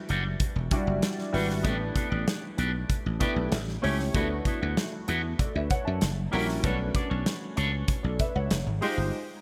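Breezy and urban, this short slice of polished 1980s jazz-funk pop moves at 96 BPM in a straight 4/4 feel, centered on D major and taken from a longer piece. A concert grand piano carries the accompaniment with an intimate, natural tone, its deep low end and audible action noise sitting up front and colored by analog chorus. Over it, a clean, picked electric guitar plays a twangy riff through an envelope filter with a subtle chorus, while a dry, growly thumbed slap bass, foam-muted and direct, anchors the bottom. A modern acoustic studio kit of hi-hat, punchy kick and medium-tuned snare drives the groove from close in front. The harmony moves through rich extended chords such as Em9, A9sus4, D69, F#7b9 and Bm9 before a sudden Fm9, and the band lands a shared accent at 9.1 seconds, all wrapped in a bright, digital 1980s-style production with light reverb.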